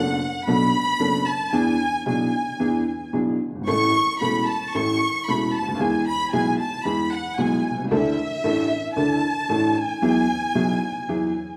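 A bowed violin section and a woody, slightly detuned upright piano open together in this sultry, dramatic tango excerpt at 113 BPM in 4/4, played with a rubato feel and tuned to A4 = 436 Hz. The violins, smooth and close with vibrato, sit up front with the boxy piano accompaniment as the harmony moves from Bm7 through E7, A, E and Dsus2 to Eadd9. A wet recital hall reverb surrounds the sound, and the piano stops at 11.3 seconds, just before the violins finish at 11.6 seconds.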